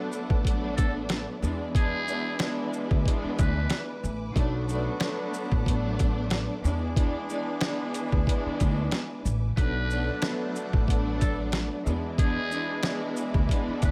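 A swung boom-bap groove at 92 BPM in 4/4 drives this gritty, tough hip-hop fragment, its compressed, pitched-down sampler drums up front with a thumpy kick, medium-tuned snare, hi-hat and shaker entering at 0.1 seconds. A woody, dark upright bass joins at 0.3 seconds, plucked on gut strings, while the harmony rocks between Bm7 and E7. A lush bowed string section carries the accompaniment in the low-middle register with vibrato and portamento, passed through cassette tape coloring and filtering, as a second, richer string section holds sustained chords high in the background. A loose jazz-style horn section adds warm stabs with octave doubling and tape echo, sitting back in the mix. Over this, a buzzy, raspy trumpet with a metal mute plays a narrow solo melody with scooped notes and a growling vintage edge, heard from 0.8 to 3.9 seconds and again from 9.6 seconds to the end, with the whole sound kept dry and close.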